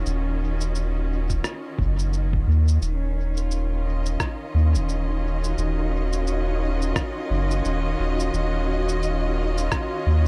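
A slow, swung 4/4 groove of muffled, pitched-down shaker and rim clicks carrying dub echo moves through this deep, spacious ambient dub fragment, joined at 1.3 seconds by a thumpy, compressed electronic kick with a small-room tint. Up front, a rich bowed string ensemble holds smooth, vibrato-laden sustained chords over an Ebm7 harmony, while a round, soft sub bass of triangle and square tones sits deep beneath them. The whole is bathed in digital ambience, with the strings and bass sounding throughout the 10.3 seconds.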